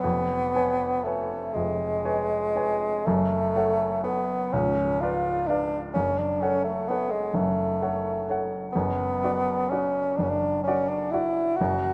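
A moderate scoring-stage reverb, 1.9 seconds long, surrounds this close and intimate recording, a section cut from a longer romantic classical piece for bassoon and baby grand piano, tuned to A4 = 443 Hz. In a solemn, melancholic F# minor, the music moves freely in a rubato 6/8 at about 40-44 BPM, counted in dotted quarters. Up front, the mellow, close-miked bassoon sings the melody with vibrato from 0.0 to 11.9 s, while the present piano, its action noise audible, accompanies under harmonies of C#7/E#, F#m, C#7b9 and Bm/F#.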